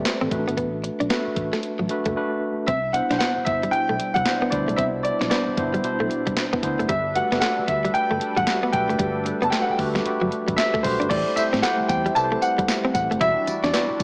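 New jack swing R&B at 114 BPM in 4/4, with a bouncy, punchy sixteenth-note swing, cut from a longer piece and tuned slightly flat of standard pitch. A clean tine electric piano sits up front from the start over a dark, round, foam-muted fingered bass. A clean 12-bit drum machine brings a thumpy kick, a medium-tuned snare, handclaps, hi-hat, tambourine and crash cymbal, all bathed in gated reverb. A picked, compressed electric guitar, recorded direct with a subtle chorus, adds a riff from 0.2 seconds. After a brief silent gap, a clear, polished baby grand piano takes the melody at 2.7 seconds, joined by a smooth, detuned sawtooth pad with chorus and phaser sitting in the background. The chords move from Bm7 through Cmaj9 and Gmaj9 to Am7 and Em9, and the whole mix has light reverb and a small-speaker sound.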